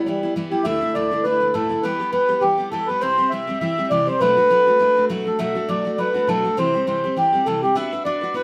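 A mellow, reedy accordion with slow beating and plate reverb carries the melody up front in this wild, dark and lively Celtic reel excerpt, swung in 4/4, while a full-bodied picked steel-string dreadnought guitar, also up front, accompanies through chords moving from Em through C and Bm7 in a moderate studio room.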